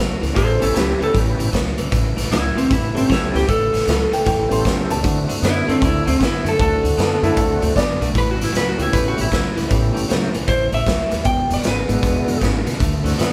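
This electric blues shuffle opens with a twangy, picked clean electric guitar riff over woody pizzicato upright bass, joined almost at once by a gritty, saturated garage drum kit with a punchy kick and a pumping room sound. A tonewheel organ fills in underneath with key click, chorus vibrato and a slow rotary speaker. The electric slide guitar carries the melody until 12.4 seconds, played with fingerpicks in a slightly broken-up, compressed tone. An intimate upright piano with audible action noise, heard briefly at the start, adds a second line from 4.1 to 8.1 seconds. At 154 BPM in 4/4 with swung eighth notes in A mixolydian, the band moves through A7, D7 and E7 changes with a swaggering, rollicking mood. It sounds like a live performance in one room with moderate studio ambience, the drums sitting up front.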